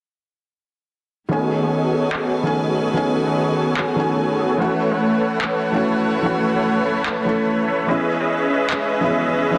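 A half-time future bass groove at 146 BPM with a 56% swing on the sixteenths sets a dreamy, bittersweet mood in this short cut from a longer piece, tuned to A4 = 445 Hz and moving through B13, A6 and C#m9. Huge, detuned supersaw chords sit up front under a low-pass filter sweep, entering at 1.3 seconds together with a soft, felt-muted upright piano with audible action noise and digital delay, and a bright, earthy chamber string section holding sustained chords. Layered, tape-tinged electronic handclaps with studio reverb enter at 2.1 seconds and stop at 8.8 seconds, all set in a small-room ambience under a dense, heavily limited modern master.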